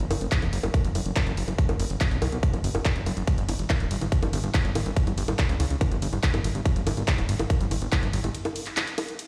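This excerpt of psychedelic trance at 142 BPM in a straight 4/4 opens on a fat, detuned sawtooth bass with a filtered pluck, sounding up front alongside a layered big-room dance kit of bongos, handclaps, hi-hat and ride cymbal, with a punchy electronic kick joining at 0.3 seconds. The mood is intense and psychedelic, and the whole mix sounds as if played on a big sound system in a bare room with stone reverb. At 8.3 seconds the bass drops out for a short break, leaving the dance kit running on to the end.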